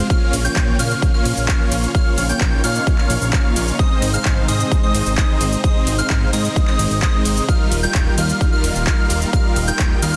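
A dense, heavily limited modern master with light digital ambience carries this powerful, anthemic festival progressive house excerpt at 130 BPM, moving through Bbm, Ab and Ebadd9. A huge, detuned supersaw riff and a fat, wave-folded analog bass pump under sidechain, while a bright, catchy plucky lead with chorus and delay arpeggiates high above and a lush, phased pad sustains chords very quietly beneath. From 0.1 seconds a punchy, up-front electronic kick drives the groove alongside an overdriven big-room kit of metallic hi-hats, handclaps, cabasa and ride cymbal.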